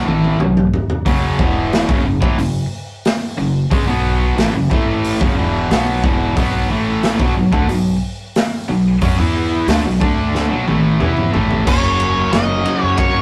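A rough, tube-saturated rehearsal-room recording with moderate reverb carries this confident, swaggering classic rock cut, where a gritty garage drum kit with a punchy kick and dark cymbals pumps up front in its small room beside a tight, bright distorted guitar riff, a crunchy overdriven guitar sits in the background, a thumpy, woody pizzicato upright bass anchors the low end, a double-tracked overdriven electric guitar joins at 1.1 seconds, a very quiet shouting tonewheel organ with key click and slow rotary speaker slips in at 11.3 seconds, and a dark octave-fuzz lead guitar melody steps forward at 11.7 seconds.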